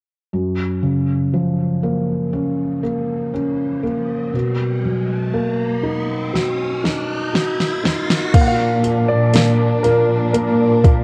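A slow, straight 4/4 pulse at 60 BPM carries this heartfelt, emotional pop ballad in F# major, cut from a longer piece, opening with a felt-muted upright piano whose thick felt and audible action noise lend its F#maj7 and Bmaj7 chords a soft, intimate hush, while an electronic riser sits quietly beneath from 1.9 s. An electronic R&B drum kit enters up front at 6.4 s with a fill of soft kick, fat snare, metallic hats and crash; at 8.3 s the harmony moves to A# as a dark, vintage grand piano takes the melody, joined by expressive bowed studio strings with portamento and a veiled, con sordino cello section holding the bass. Analog delay on the pianos and drums, a moderate spring reverb and an echo-heavy, cassette-tape mix give the sound a hazy, nostalgic cast.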